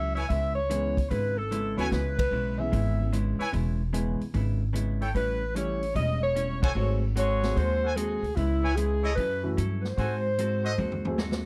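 A dry, close 1970s-style studio sound frames this brassy, swinging big band excerpt in C# minor at 149 BPM, where a mellow saxophone section carries the melody over woody pizzicato upright bass, dark hollow-body guitar, an intimate upright piano with audible action noise, distant trumpet stabs and a punchy drum kit that closes with a fill at 10.8 seconds.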